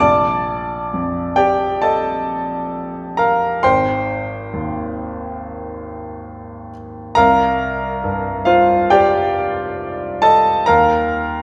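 A clear, intimate baby grand piano carries this brief impressionist solo, sitting up front with a natural tone and audible action noise that brings the listener close to the instrument. The mood is hazy and dreamy, with a rubato feel in a slow four that lets the phrases breathe freely. The harmony drifts from Bbmaj7 through Ab and Cm11 before settling on Eb5 near 10.7 seconds, and the playing spans a broad register from deep bass up into the high treble. A moderate concert hall reverb adds a soft halo around the instrument while keeping its detail intact. This 11.4-second passage is cut from a longer piece, so it feels like a suspended moment rather than a complete statement.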